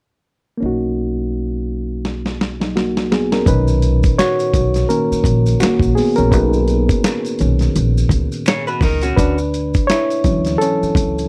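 A reedy, clean electric piano sits up front from 0.6 seconds, laying down chords before taking a solo from 3.5 seconds in this smooth, relaxed neo-soul R&B fragment with a swung sixteenth-note feel. A woody, dark pizzicato upright bass plays alongside it, a gritty, compressed sampler-style drum kit with a thumpy kick enters with a fill at 2.0 seconds, and faint, distant maracas and finger snaps join at the solo. Near the end, an electric guitar through a small old amp adds a brief slightly broken-up, lo-fi line as the harmony moves from Bmaj9 to Dmaj9, all in a dry, close 1970s-style studio sound.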